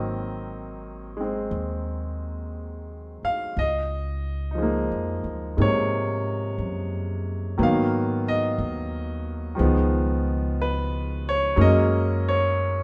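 Bathed in a moderate large-studio reverb, this late-night, romantic jazz ballad excerpt moves at a slow 60 BPM swing in 4/4, with a clear, up-front grand piano comping over a woody, thumpy pizzicato upright bass as the harmony drifts from Ab7 into Db major at 3.6 s and on through Abm7, Db9 and Gb.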